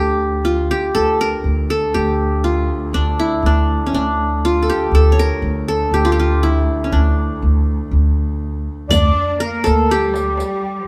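A straight 4/4 pulse carries this hypnotic, melancholic Arabic maqam ensemble, where an up-front, bright-edged qanun plays the melody over a woody, pizzicato upright bass and a biting bowed double-bass drone. At 8.9 s a reedy accordion and a lush bowed cello section join as second lines, with a deep clay darbuka and a jingling riq in the background, all sounding together live in a stone room.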